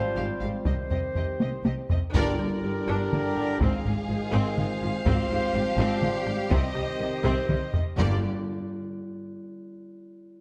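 Dark, distant trombones and soft-edged French horns hold sustained chords while clear trumpets play stabs from the opening moment of this epic, heroic orchestral film-score excerpt in triple time, joined at 0.2 seconds by a lush, smooth violin melody over a background second violin line, a focused, very quiet viola accompaniment, and expressive cellos with portamento alongside double basses carrying the bass; close, dry taiko drums with heavy sticks enter at 0.7 seconds with fills, a full-band accent lands with timpani strikes at 2.1 seconds, and the orchestra sits in a moderate scoring-stage reverb.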